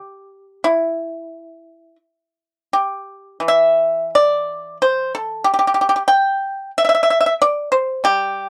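The sound is dry and close, with little reverb, in the manner of a 1970s studio recording that places the instrument up front. This is an 8.5-second passage of Chinese traditional music, cut from a longer piece, for solo pipa in the G zhi mode. The mood is elegant and pastoral, moving at roughly 84-95 BPM in 4/4 with a loose, rubato feel. The pipa, played with fingerpicks, carries the whole passage on its own, ranging from E3 up to G5. Its acoustic tone is percussive and immediate, so each plucked note lands crisply in the intimate space.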